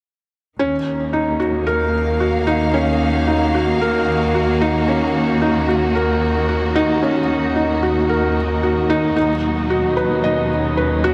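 A straight 4/4 pulse at 112 BPM carries this hypnotic, moving electronica excerpt in Eb minor, cut from a longer piece, where a soft, felt-muted upright piano sits up front with an intimate riff washed in digital delay and shimmer reverb. Alongside it, a warm bowed string section, also up front, holds sustained chords with expressive vibrato and portamento, also bathed in shimmer, while a clear, focused double bass section anchors a low Eb. Everything from 0.6 s to 11.1 s unfolds in a huge ambient space, moving from Ebm7 to B/D# at 9.2 s.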